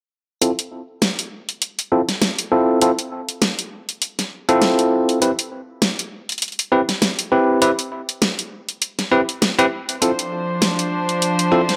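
A swung 100 BPM groove in 4/4 drives this funky, playful glitch hop fragment, cut from a longer piece, with a layered electronic dubstep kit of huge snare and bright hi-hats sitting up front in a small room from 0.4 to 11.8 seconds. A bell-like tine electric piano plays clean, direct stabs through a low-pass filter sweep and analog delay over Cadd11, Cmaj7 and Dm7, while a dark, nasal chamber string section in period style enters at 10.0 seconds with sustained bowed chords. The dry, gritty hardware sound carries transformer saturation and light digital ambience.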